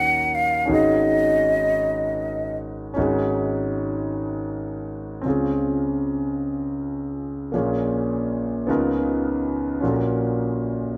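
Gospel in a slow, straight 6/8, reverent and soulful, cut from a longer piece. A breathy, hollow jazz flute carries the melody up front for just the opening 2.6 seconds, its soft attack and vibrato floating in the upper register. A concert grand piano accompanies throughout, intimate and natural, with deep bass, long sustain and the audible noise of its action close to the ear. The harmony drifts from Ebm7 through an extended Ab7sus4, then settles onto Dbmaj7 at 5.2 seconds before moving through Bbm7 and Db13 to a Gbmaj7 over Bb. A moderate large-studio reverb lends the performance a roomy, devotional glow.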